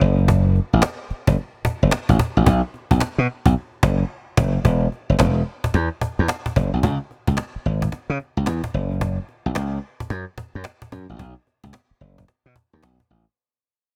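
A bright, punchy slap bass sits up front over a woody, close and dry cajon with faint snares and hard hands in this slick, confident new jack swing R&B clip at 110 BPM with a swung sixteenth feel, where a band accent lands at 3.6 seconds, the cajon briefly mutes from 4.1 to 4.6 seconds, and the music fades out from 4.6 seconds onward.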